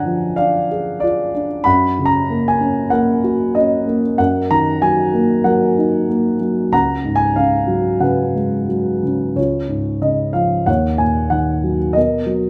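Sunny and relaxed, this short classical piece for solo piano moves at 94 BPM in 4/4 with a lyrical, rubato feel, cut from a longer work. A dark concert grand carries everything alone from 0.0 to 12.5 seconds, its mellow, boxy tone sitting up front with deep bass, intimate closeness and audible action noise, while moderate recital-hall reverb gives it air. The harmony settles around F# before shifting into a new passage at 9.4 seconds that drifts through C# and D#m7 to close on Bmaj7.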